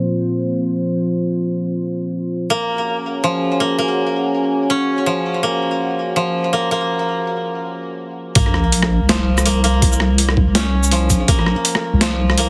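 A dark, detuned analog pad opens this tense, cinematic half-time drum and bass cut in Bb minor, holding sustained chords with chorus and a sidechain pumping as a filter sweeps across it. At 2.5 seconds a bright, woody koto, played with fingerpicks, enters with arpeggios under delay, and the harmony shifts from Bb5 to Gb. A short break arrives at 7.6 seconds before the drop at 8.4 seconds, where a very quiet sub drop marks the impact. There, a deep soft wobble bass with a fast attack and chorus comes up front on Bbm, joined by a gritty, pitched-down sampler-style drum kit with a high-tuned snare, rim click, shaker and hi-hat, plus a thumpy, overdriven electronic kick drum that plays until 11.4 seconds. At 164 BPM with a swung sixteenth-note feel, the piece carries a heavily compressed, radio-like sound with light reverb.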